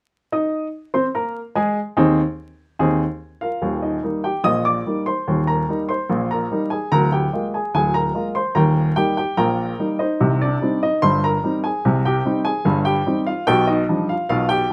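Ragtime piano in Eb major, this playful, jaunty solo moves at 73 BPM in a straight 2/4, with a woody, polished upright piano sitting up front and ranging from deep bass to bright upper notes. A short opening passage gives way at 3.6 seconds to a longer second section that moves through chords such as Cm and G7/B before this clip from a longer piece ends at 14.7 seconds. Light reverb and a layer of vinyl crackle lend the recording an old-record charm.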